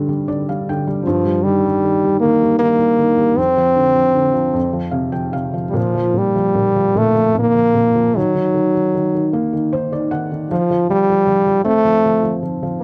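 A felt-muted upright piano opens with a soft fill, its mellow tone and audible action noise up front, before a clear, classical-style French horn enters at 1.0 seconds to carry a tender, innocent solo melody over the piano's accompaniment in this rubato 6/8 children's lullaby at 51 BPM, heard through a dry, close 1970s-style studio sound with light reverb and cut from a longer piece, with further piano fills at 4.6 and 9.3 seconds.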